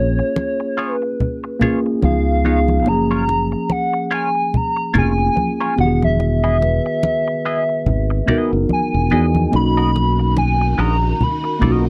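Warm and smooth, this slow, swung 1970s-style soul excerpt sets a hollow, chorused square lead over a worn, slightly out-of-tune tine electric piano, a growly fingered bass, a twangy wah-touched clean guitar riff and bright hard-hand congas, with a ringing soft-mallet vibraphone drifting in the background from 2.5 s and a shimmering string machine entering at 9.5 s, all captured in a dry, close studio sound.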